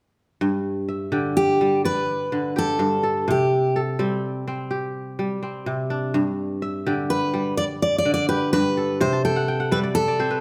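A ringing, crisp kora opens at 0.4 seconds with arpeggios spanning from G2 up to A5, setting a joyful West African traditional mood in G major. A second later, at 1.4 seconds, a full-bodied, fingerpicked steel-string acoustic guitar enters with the melody, staying within G4 to D5, and its jumbo body and audible finger squeak give it an intimate, tactile presence. Both instruments sit up front, moving at 84 BPM in a straight 12/8 feel, over chords that shift between G and C5. A moderate recital hall reverb lends the pair a gentle sense of space. Near the close, the kora adds a fill from 9.1 seconds until this excerpt from a longer piece cuts off at 10.4 seconds.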